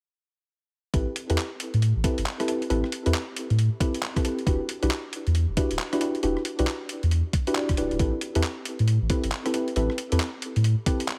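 A swung two-step garage groove drives this bouncy, late-night UK garage excerpt, built on a gritty, pitched-down kick with a thumpy punch and a compressed, sampler-style kit of handclaps, hi-hat and rim click, both set in studio reverb. Underneath, a round, soft dub sub bass sits up front, while mellow chord stabs with a nasal, full-bodied filter pluck decay through chorus and digital delay over Am9 and Em9. The whole piece starts at 0.9 seconds and carries a light reverb and a heavily compressed radio sound.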